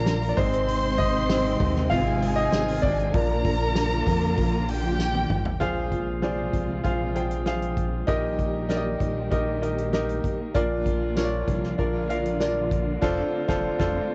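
Hopeful and anthemic, this piano-driven pop passage, cut from a longer piece, moves in a straight four with a brilliant, up-front grand piano playing throughout, taking a solo turn over the opening 5.6 seconds. Beneath it, a chorused synth bass adds a retro, glossy pulse-wave tone with a plucky filter attack. A bowed violin section sings a close, expressive second line only in that opening stretch, while a string ensemble sits in the background holding smooth, sustained chords with vibrato and portamento throughout. A natural, acoustic drum kit with a fat snare and punchy kick carries a cassette-tape colour, and a drum fill at 5.0 seconds leads into the next section, where the harmony shifts over a Bb bass. A jingly, close and dry tambourine sits low in the mix, and the full band lands an accent from 13.0 seconds, all heard in light reverb and small-room ambience on a home cassette recording with a dull, rolled-off top.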